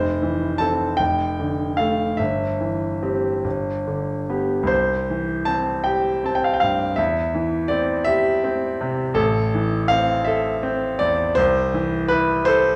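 Set in a large studio with a generous wash of reverb and heard from a little way back in the room, this short passage cut from a longer piece features a single grand piano with a clear, natural tone. It is a tender, nostalgic romantic nocturne in a lilting 12/8, played with free rubato across a span from deep bass F1 up to A5. The harmony drifts from Fmaj7 through Dm/F and C/G to G, settles on C, then turns wistfully toward Am and Am/C by the close at 12.8 seconds.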